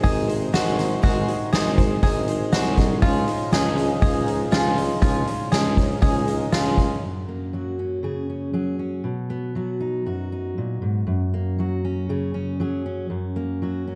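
A dark, warm production with light reverb frames this nostalgic indie folk excerpt in F# major, moving at 119 BPM in a straight 4/4 with a building arrangement. For its first 7.0 seconds, a felt-muted upright piano with audible action noise, a boxy, bright parlour guitar picked with fresh strings, a reedy, breathing pedal harmonium holding sustained chords, and a twangy bluegrass banjo playing arpeggios all sit low beneath a roomy, distant tuba carrying the bass. A soft-mallet drum kit, up front with a boomy kick and a medium-tuned snare alongside hi-hat, drives this opening until 6.9 seconds, and the piano slips in a brief fill at 2.0 seconds. The harmony moves from G# to C#add9 before the texture changes at 7.0 seconds, when the earlier parts drop away and a full-bodied fingerpicked dreadnought guitar takes over alone at the front. Its closing passage cycles through F#add9, B and back to F#add9.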